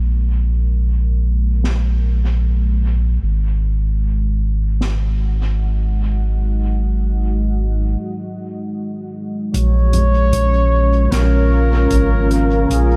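A dark, detuned sawtooth pad with chorus and a filter sweep hangs over a round, up-front sub bass to open this hazy, spacious ambient dub excerpt; at 1.6 seconds a distant, roomy soft-mallet drum kit of hi-hat, snare and toms joins, trailing dub echo, and after a break from 8.0 seconds a veiled, bucket-muted trumpet with light vibrato and its own dub echo arrives at 9.5 seconds alongside a very quiet, dry electronic kick drum.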